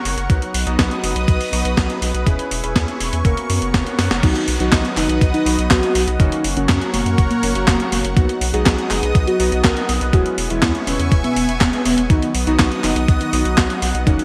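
A lush, detuned sawtooth pad holding sustained chords opens this danceable, romantic italo disco excerpt, coloured by chorus and phaser, alongside vintage electric grand piano stabs with a clangy low end. Almost at once a deep, round analog bass joins, along with a clean 12-bit drum machine of handclaps, hi-hat, a medium-tuned snare and crash cymbal under gated reverb, and a thumpy electronic kick that sits loudest in the mix. A very quiet electronic swell appears at 3.4 seconds, and a drum fill and band accent mark the arrival of the second section at 4.2 seconds. There a soft, octave-layered synth lead carries the melody, full-bodied and dark, with vibrato, chorus, phaser, delay and a cassette-tape tint. The harmony moves between B, E6 and F# chords, and the bright 1980s-style digital production sits in a moderate plate reverb with a touch of vinyl crackle.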